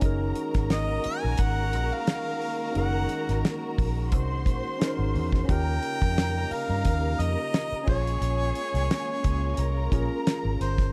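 A lightly swung sixteenth-note groove in 4/4 opens this lush 1970s-style soul passage, carried by a damped, dry drum kit with a fat snare, tight kick, hi-hat and crash cymbal sitting up front. Beside it, a vintage foam-muted fingered electric bass, round, punchy and amped, holds the low end just as prominently. A barky, clean tine electric piano played through a combo amp supplies the accompaniment, while two bowed string sections add lushness: a dark, woody one with a smooth top holds sustained chords in the background, and a clear, focused, more distant one traces a higher second line with vibrato. From 0.7 seconds a warm harmonica takes the solo melody in a jazz style, with light vibrato, scooped notes and a slapback echo. The harmony moves from Gb69 to Eb7 at 5.5 seconds and Bbm7 at 7.9 seconds, and the small room ambience and dark, warm production give this silky, smooth excerpt, cut from a longer piece, an intimate glow.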